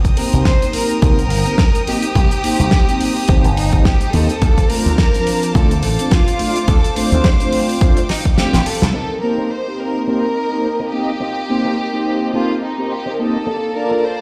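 A swung 106 BPM nu-disco groove in C dorian, sleek and sensual, rides an overdriven, punchy electronic kick and a dry, damped 70s kit with a fat snare and hi-hat, joined by a bright slap bass through an envelope filter, round sawtooth synth brass with chorus, a close, earthy violin section holding pumping, filtered chords and an intimate sul tasto violin section carrying the melody through dub echo, until a drum fill and a band accent at 8.8 s give way at 8.9 s to a clean, compressed electric guitar riff with lush chorus sitting in the background while a filter sweep passes over a violin section, all heard in a bare stone room.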